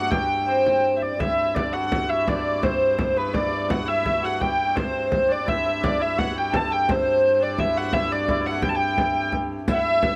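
Rustic and ancient in mood, this short cut from a longer medieval dance moves in a straight 6/8 at 113 BPM, felt in dotted quarters, in G major with tuning at A4 = 445 Hz, and it speeds up throughout. A dark, woody hurdy-gurdy carries the wheel-bowed, keyed melody up front from the opening. A breathy, reedy tenor recorder with vibrato and a soft chiff sits distant in the background on a second line, while a hammered dulcimer adds another, shimmering line lower down. A clear viola da gamba holds a pure, floating drone on G2, with light vibrato and an airy bow. A deep, large frame drum played with hard hands sits up front with a compressed, saturated weight, and a vintage riq's bright, band-limited jingles appear briefly at 9.7 seconds, the ensemble set in light reverb.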